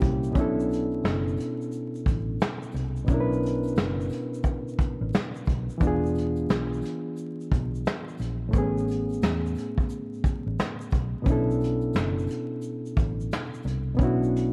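Lo-fi hip hop with a hazy, reflective mood, moving at 88 BPM in 4/4 with a swung sixteenth-note feel in B dorian, tuned slightly below standard. A barky, reedy electric piano sits up front as the accompaniment, lightly overdriven and heard as if through built-in speakers, with a low-pass filter and cassette tape coloring its bright tone as it moves through Bm11, E7b9 and Amaj9 before returning to Bm11. Beneath it, a vintage foam-muted fingered electric bass gives a dark, round, amped low end, while a vintage brush drum kit with a punchy kick, medium-tuned snare, hi-hat and shaker plays in a small, pumping room with a rolled-off top. A grainy egg shaker sits close but very quiet, dropping out at 13.8 seconds. The whole track carries worn, warbling old-tape character with warbly pitch drift, vinyl crackle, light reverb and small room ambience, and it is cut from a longer piece.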